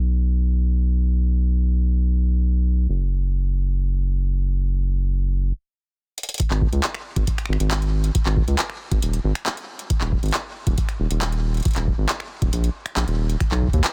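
Melancholic and glitchy, this IDM excerpt at 137 BPM in G# minor opens on a round, dark analog bass with tube saturation alone, then after a stop from 5.5 to 6.4 seconds and a drum fill at 6.2 seconds, a booming analog drum machine with metallic, low-pass filtered hats, snaps, handclaps and tape echo enters, followed by a deep electronic kick, in a dense, heavily limited, dry mix.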